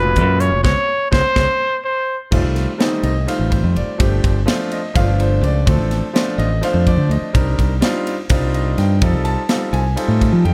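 Funky and soaring, this electric jazz fusion excerpt moves at 251 BPM in eighths, in a straight 7/8 centered on F mixolydian. A breathy, vibrato-laden trumpet opens with a short jazz-style solo from 0.0 to 2.2 seconds, staying in a narrow upper range around Cb5 to Db5. The band hits an accent and the drums play a fill beneath it. A crisp fusion drum kit enters at 0.2 seconds with a medium-tuned snare, punchy kick, hi-hat, ride and crash, sounding airy in a studio room. A fingered electric bass sits up front with a direct, warm tone, while a bright, intimate grand piano with audible action noise and long sustain comps through changes like F9, G9sus4, Dm7 and Cm9, adding its own fill from 8.3 to 9.0 seconds. Light reverb gives the mix a touch of space.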